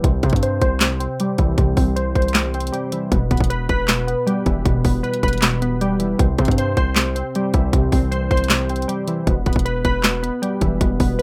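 Dark and hard-hitting, this trap hip hop excerpt rides a half-time feel at 156 BPM, with glassy, detuned digital keys, softened by chorus and a low-pass filter, cycling between C and E minor up front in the mix. Beneath them, a punchy, heavy 808-style bass with a noise layer drops as low as D1, while a trap drum kit of hard-clipped kick, sharp snare, handclaps and bright hi-hats, re-recorded in a small room, drives all 11.2 seconds. The dry, rough home-demo sound leaves the parts close and raw.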